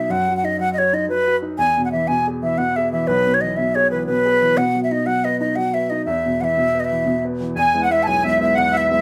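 Lively and cheerful, this short slice of a Celtic slip jig in 9/8 puts a bright, airy wooden baroque flute up front over a woody, long-sustained upright piano. A sweet, reedy accordion with light tremolo tuning joins for a second line at 7.6 seconds, all in a moderate studio reverb.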